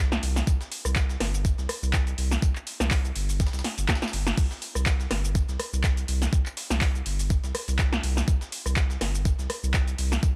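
The overdriven electronic kick drum stands out most, a thumpy, sampler-style hit with a small-room character, sitting up front from 0.5 seconds in this gritty, driving acid house cut taken from a longer piece. Underneath, a deep, thick sine sub bass with tube saturation and sidechain pumping holds the low end from the start, moving between G1 and C2 with a fast attack and sustained notes. An analog electro drum machine adds a punchy snare, metallic hats, handclaps, rim clicks, shaker and crash cymbal, with a short room on the snare, claps and hats. Far back in the mix, a very quiet, compressed breakbeat sampler-style kit contributes a gritty, medium-tuned snare, hi-hat and tambourine with a large-room sound. At 123 BPM in 4/4 with a light 16th-note swing, the groove breaks for a drum fill from 3.6 to 4.4 seconds, all set in an echo-heavy digital ambience.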